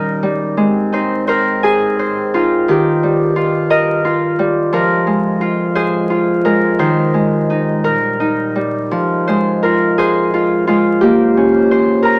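A bright, ringing Celtic harp carries the fingerpicked melody up front in this tender, gentle lullaby excerpt in a rubato 6/8, while a warm woodwind section holds tight, classically styled sustained chords with light vibrato in the background, all set in a small room's moderate reverb beneath a layer of vinyl crackle.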